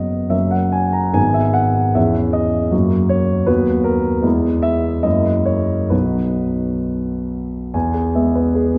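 Romantic classical character piece for solo piano in a hopeful, passionate mood, heard as a brief passage cut from a longer work: a concert grand with deep bass, long sustain and an up-front presence moves in a flexible rubato through 2/4, its harmonies settling home on B at 5.9 seconds before a new section opens on E at 7.7 seconds, all bathed in a lush concert hall reverb.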